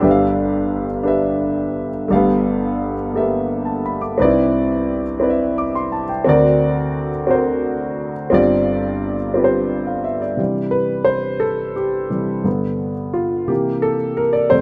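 Soulful and reverent, this gospel excerpt in a straight 6/8 features a lone concert grand piano, intimate and up front, with deep bass and audible action noise adding a natural, close-up character. Rich harmonies such as G9, Cmaj9 and an augmented seventh color the opening passage before the music settles into a plainer C and G progression from 10.4 seconds, closing on a C7. A light studio reverb surrounds the piano in a rough, home-demo mix.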